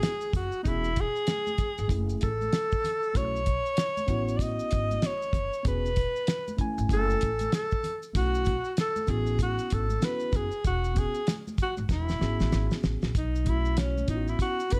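A breathy, whispered alto saxophone with slapback echo carries the melody from the start over a mellow tine electric piano's jazz chords, a cloth-damped, thuddy drum kit with a fat snare and tight kick, soft-handed maracas and congas in the background, and a woody pizzicato upright bass entering at 0.3 seconds, all in a relaxed, swung jazz-hop groove with dark, small-room production that ends on a drum fill at 11.9 seconds and a brief sax solo from 13.2 seconds in this cut from a longer piece.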